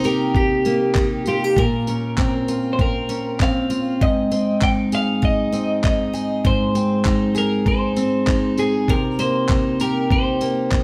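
Acoustic pop with an easy-going, carefree mood, this short excerpt moves in a straight 4/4 feel from start to finish. A picked steel-string acoustic guitar sits up front, its warm, auditorium-sized tone laying down the accompaniment in a low-to-middle register. Above it, a bright, twangy twelve-string electric guitar carries the melody, its clean, picked tone compressed and washed in plate reverb. A dusty, sampler-style drum kit with gritty, tape-tinged character supplies a thumpy kick, handclaps and tambourine, also placed up front. The harmony moves from Cm7 to Bbmadd9 and settles on Ab before returning to Cm7 at 8.9 seconds. The whole ensemble is heard from further back in a reverberant studio room, lending the track a relaxed sense of space.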